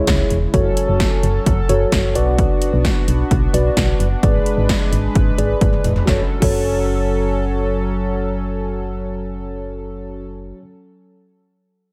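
A straight 4/4 pulse at 130 BPM drives this cool, nocturnal synth-pop excerpt in F# minor, where a round, dark FM bass, a mellow tine electric piano and a shimmering, chorused pulse-width pad carry the C#m, F#m, Bm and G#dim changes under up-front 80s electronic drums with a punchy kick, metallic hats and gated reverb on the snare and toms; the drums roll through a fill at 5.6 seconds into the second section and drop out at 6.5 seconds, leaving the other three parts to continue on F#m in a dry sound.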